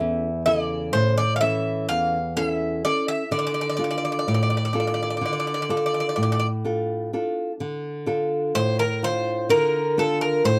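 A metallic bouzouki melody with double strings and some octave-doubled courses opens this melancholic, reflective Greek folk piece, sitting up front beside a bright, fingerpicked nylon-string guitar whose fresh strings give off finger squeak. The pair moves in 9/8 at 126 BPM with a straight feel, carried by the guitar's classical accompaniment, as the harmony shifts from A to Dm at 3.3 seconds. A new section begins at 7.6 seconds, all captured with close, detailed microphones in a moderate studio ambience.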